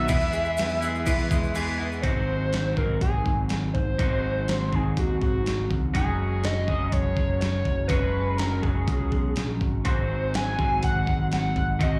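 A straight 4/4 pulse at 123 BPM drives this wistful, upbeat indie rock excerpt, heard as a live gig through a club PA, where a screaming, warbling overdriven synth lead with distortion, plate reverb, slapback and digital delay carries the melody up front over riffs from a slightly broken-up electric guitar through a small old amp with ensemble chorus and a twangy twelve-string electric guitar with spring reverb, a growly picked electric bass, a thumpy gated 80s digital drum machine with gated-reverb snare and overdrive, and a grainy tube shaker in the background only until 2.0 s, with a brief break at 1.6 s before the chords move from E to G#7 and F#sus2.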